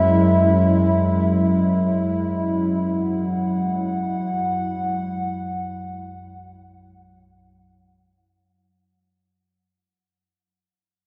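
A vast, cavernous reverb with a long seven-and-a-half-second tail surrounds this desolate dark ambient drone, cut from a longer piece. A nasal, moody analog pad sits up front with chorus, holding sustained chords that fade out across the full 9.2 seconds. Beneath it, a deep, ominous drone rumbles and warbles with a wave-folded, vintage character, bathed in its own reverb and lush chorus.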